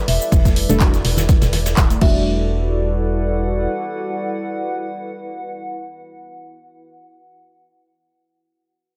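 Hypnotic and deep, this 124 BPM deep house excerpt in E minor rests on an Em11 chord. A hollow, flute-like pad and mellow, nasal chord stabs both carry chorus and sidechain pumping, with dub echo on the stabs. A warbling, lo-fi tape-like pad adds nostalgic texture, and a background marimba with medium hard mallets sounds an E5 melody through dub echo. An up-front organ-like FM bass plays until 3.7 s. Meanwhile a punchy electronic kick, a deep house kit of cabasa, crash, handclaps and dark hats, a gritty, saturated breakbeat kit of hi-hat and snare, and bright, hard-hand congas drive the opening drop until about 2.1 s, all in a small room reverb.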